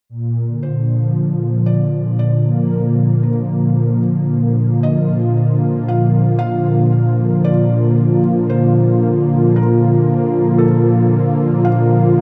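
A smooth, detuned analog pad sits up front in this peaceful ambient fragment, holding sustained chords from 0.1 seconds with a soft attack, a long release and a touch of chorus. From 0.6 seconds a felt-muted upright piano fades in, carrying an intimate, mellow melody in the background, with audible action noise and a delay on its short notes. The recording is set in a vast, echoing cathedral reverb.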